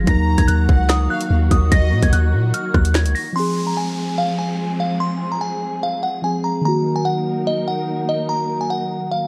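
Cold and tense, this short drill cut from a longer hip hop piece moves at 146 BPM with a half-time feel in F phrygian, where a delicate, tinkling FM synth bell carries the melody over muted, felt-like synth keys and a dark, distant symphonic string section holding sustained chords through Ebm, Fm and back to Ebm. A deep, sine-toned 808 bass and an up-front drill kit with a hard-clipped kick, woody snare, metallic hats, rim clicks and finger snaps drive the opening until about 3.2 seconds, while a rich studio violin section with tape echo adds a brief second line early on. From 3.4 seconds an electronic downlifter sinks beneath the bell, keys and strings, all set in a dark, warm digital ambience.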